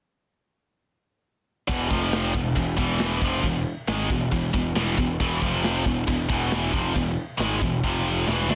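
A dense, heavily limited modern master with little reverb and lossy artefacts carries this aggressive, relentless heavy metal excerpt at 137 BPM in a straight 4/4, where a bright, double-tracked high-gain guitar riff sits up front, grinding between E5 and F5 power chords over a growly, punchy fuzz bass and a tight metal kit with a tight kick, medium-tuned snare and bright china cymbal, all three entering together at 1.7 seconds before a drum fill at 8.3 seconds.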